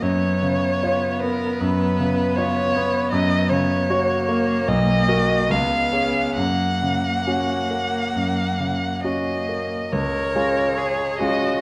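A wet recital-hall reverb surrounds this lyrical, tender passage for piano trio, cut from a longer slow romantic movement that moves with a flexible, rubato feel. Both bowed strings sound rich and carry vibrato: the solo violin takes the melody up front, shaping it expressively with portamento, while the cello sings a smooth, even second line from close by. Beneath them the concert grand piano supplies a clear, polished accompaniment that sits present and up front, its deep bass anchoring the harmony and its notes fading with short sustain. The three players sound together throughout, and at 9.9 s the music turns toward a new section as the harmony shifts.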